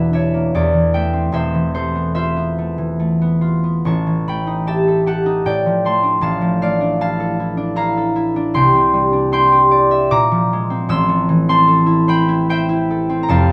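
Classical solo harp fragment in a serene, dreamy mood, where an acoustic concert harp, up front and ringing under light reverb, is fingerpicked in a rubato triple metre across a span from E1 to E6, drifting through lush colours such as E7#11, Fmaj7#11/E and Bbmaj7#11/A before settling on Amadd9 near 10.9 seconds.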